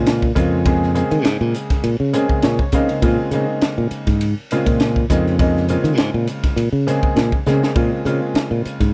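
Slick and driving, this short electric jazz fusion excerpt, cut from a longer piece, moves at 101 BPM in 4/4 with a light swing on the sixteenths, sitting on a Bb minor seventh chord throughout. A crisp fusion drum kit, entering at 0.1 seconds, works hi-hat, kick, snare and ride in a small, pumping room, with a high-tuned snare and a punchy kick placed up front. The bright fingered electric bass has a direct, growly bite in its low register. A clear baby grand piano, somewhat boxy in tone, supplies the accompaniment and breaks into a brief fill from 2.1 to 3.0 seconds. The drums add a fill of their own at 7.5 seconds, and the whole mix stays close and dry, with little reverb.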